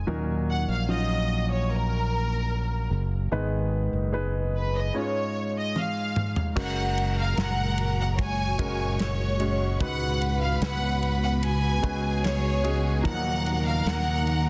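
Emotional and melancholic, this pop ballad opens with a polished grand piano and a punchy, up-front fretless electric bass beneath a clear, lush violin section with vibrato carrying the melody. A drum fill at 5.8 seconds brings in a natural country kit with dark cymbals and a tight kick, set in the background, and at 6.6 seconds a rich, smooth-topped second violin section adds its own line. From 7.3 seconds an ethereal, warbling pad with a slow attack, ensemble chorus and built-in reverb sustains chords in the background, all set in a small room with light reverb and a dense, heavily limited modern master.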